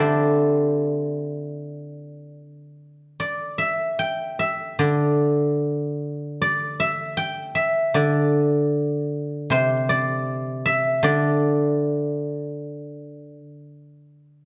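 A solo guzheng, played with fingerpicks, rings out up front in this short excerpt of Chinese traditional music for plucked strings, its tone bright and silvery. The mood is flowing and pastoral, with a rubato feel around 77 BPM in 4/4 and the melody set in the D shang mode. The instrument covers a span from C3 up to G5 and plays alone for the full 14.4 seconds, which are cut from a longer work. A moderate recital hall reverb gives each plucked note space to bloom and linger. The overall production leans dark and warm, framing the crisp strings in a soft, rounded setting.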